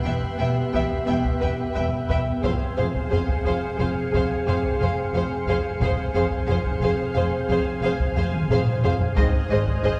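Cinematic suspense film score in 5/4, this short excerpt feels mysterious and uneasy, heard from further back in a reverberant scoring stage. A distant, bowed violin section carries the melody while a second, focused violin line sits just beneath it, and a lush, very high violin texture shimmers quietly in the background. Smooth viola and cello sections, joined by an expressive double bass section, fill out the low accompaniment and bass, and a mellow French horn section holds sustained chords. A bubbling, detuned sawtooth texture with random filter steps, chorus and its own reverb adds a bright, resonant electronic haze to the chords, while a taiko ensemble struck with hard sticks plays throughout and adds a fill from 8.3 to 9.2 seconds. A very quiet, ringing concert harp enters at 4.5 seconds, and the harmony moves from E minor to F minor before landing on G# at 9.2 seconds.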